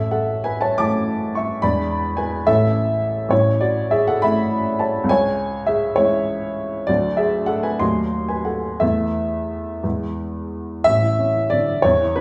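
A woody, slightly detuned upright piano carries this short romantic character piece on its own, with the audible clatter of its action adding an intimate, natural quality. The mood is lyrical and warm, moving in a lilting 6/8 at a slow, flexible pace shaped by rubato. The harmony settles from A to E7 and back, then drifts through C#m, D and a D#dim7 before leaning on Esus4 and resolving to E. At 10.9 s the music returns to A as a new section begins, and the excerpt breaks off at 12.2 s, clearly cut from a longer work. The piano sits up front, yet a stone room reverb lends a sense of listening from further back in the space.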